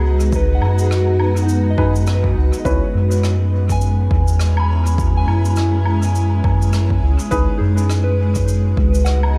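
A swung 16th-note groove at 103 BPM in 4/4 drives this hazy, spacious ambient dub fragment in C# minor, carried by an up-front, deep and round sub bass and a punchy, overdriven electronic kick, while cabasa, woodblock and rim click tick lightly through dub echo. Above them a blurred, detuned granular cloud pad holds lush sustained chords moving between B6/C# and C#m7, and a pure FM bell spins gentle arpeggios through chorus and diffuse ambient delay. A worn, woody upright piano drops echoing stabs around 1.8 seconds and again at 7.3 seconds, all set in a light reverb.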